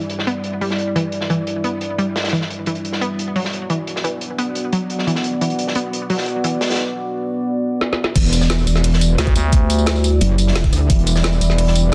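A dense, heavily limited mix with light reverb carries this tense, aggressive dark technical drum and bass cut at 175 BPM in E minor, where a deep, moody sawtooth pad with chorus and sidechain pumping holds sustained chords under a gritty, saturated breakbeat kit of hi-hat and snare and a lush, detuned unison pluck playing up-front arpeggios through delay, before a fill at 7.8 seconds brings in a second kit with a woody snare, metallic hats, crash, rim click and tambourine, and the drop at 8.2 seconds lands a knocking electronic kick and an aggressive, tube-saturated metallic wobble bass, joined briefly at 9.2 seconds by a thick, growling FM bass.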